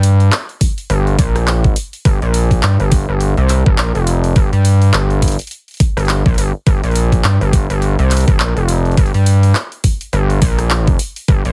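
Glitch hop with a swaggering, playful strut and a swung sixteenth-note feel, cut from a longer piece. A gritty, nasal synth bass with a plucky, saturated bite sits up front alongside a knocking, overdriven electronic kick that enters at 0.6 seconds, while a layered pop kit of handclaps, hi-hat and rim click adds its own overdriven crunch lower in the mix. The dry, heavily compressed radio-style sound keeps the bass and kick punchy and close.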